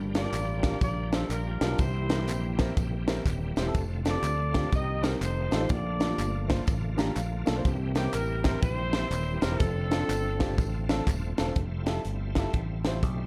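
A dry, dark-toned production carries this jubilant, soulful uptempo gospel excerpt in F major at 123 BPM with a swung feel, where a crisp fusion drum kit with punchy kick and high-tuned snare and a bright, punchy fingered electric bass sit up front, a woody upright piano accompanies and adds a fill at 6.7 seconds, a tight vintage horn section with light vibrato carries the melody, and a shouting tonewheel organ with slow rotary speaker and key click holds sustained chords in the background alongside close, dry tambourine and handclaps.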